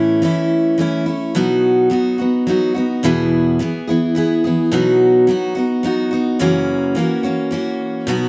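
Sunny and down-home, this brief country fragment in E major moves at 107 BPM in a straight 3/4, featuring a lone picked steel-string acoustic guitar, a bright and full-bodied dreadnought with audible finger squeak, sitting up front in moderate studio reverb as it moves through A, B, E, B and F#7 across its 8.3 seconds.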